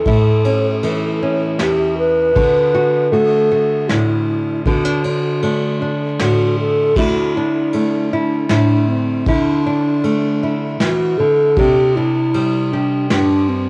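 Gentle acoustic folk in a steady three-four, cut from a longer piece, where an airy, hollow alto flute with a soft attack carries the solo line over a small, up-front fingerpicked nylon-string guitar and a dark, smooth brush kit with tight kick, dark cymbals and a rolled-off top, all softened by cassette tape and a light small-room reverb that gives the home recording a warm, mellow feel.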